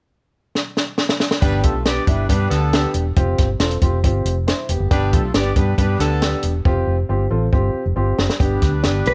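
Joyful and danceable, this uptempo 1960s-style soul piece at 138 BPM in G mixolydian opens with a dry, punchy cocktail drum kit fill from 0.6 s, joined at 1.4 s by a round, foam-muted electric bass, a woody upright piano with audible action noise and a smooth horn section with light vibrato over G and Fsus2 chords, before a dark, clean, compressed electric guitar with tube saturation and analog chorus sounds a melody note at 9.1 s, all in a light reverb.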